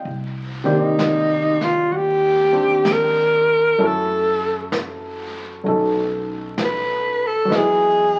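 A breathy alto saxophone carries the melody up front, close-miked with vibrato and subtone, entering at 0.7 seconds over a baby grand piano that sits present in the accompaniment. This romantic, intimate jazz ballad moves at a slow 64 BPM with a swung feel, the woody pizzicato upright bass and a dark, smooth vintage brush kit on snare and hi-hat filling out the quartet, with chords moving from Cm9 through Gbm7 and B9 to Emaj7. A large studio reverb and the crackle of a very old 78 rpm record give this short excerpt, cut from a longer piece, an aged, nostalgic patina.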